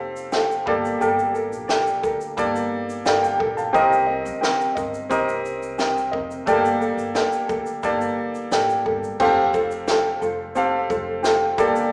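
Heard through a small speaker in a reverberant church or concert hall, this short acoustic pop passage cut from a longer piece moves at an unhurried 88 BPM in 4/4 with a wistful, reflective mood, cycling through Fadd9, Gm add9 and Cm7 before a new section opens at 9.2 s. A brilliant, polished concert grand piano with deep lows and short sustain shares the foreground with a light, thumb-plucked ukulele. Beneath them, a woody, thumpy pizzicato upright bass sits low in the mix, while a dry cocktail drum kit, entering at 0.2 s, adds a punchy kick, a high-tuned snare, shaker and dark crash cymbal.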